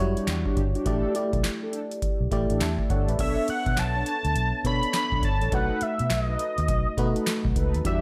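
A bold, retro octave-doubled lead with chorus and vibrato enters at 3.2 seconds and stands up front, its detuned sawtooth line carrying the melody over this punchy, bouncy new jack swing cut from a longer R&B piece in B minor. Beneath it, a booming analog drum machine drives a swung 16th-note feel at 103 BPM, with a deep kick, crisp snare, metallic hats, handclaps and crash cymbal, a short room on the snare, clap and hats. A glassy FM electric piano with a bell-like attack and warbling chorus sits forward in the accompaniment, while a dark, foam-muted fingered electric bass adds round, amped low end from the start. Mellow synth brass stabs, sustained, detuned, with a filter sweep, chorus and analog delay, arrive at 0.2 seconds. The harmony moves from Em9 to A7sus4, then shifts to Bm9 and B7 as the lead comes in, all set in a dreamy mix soaked in moderate plate reverb.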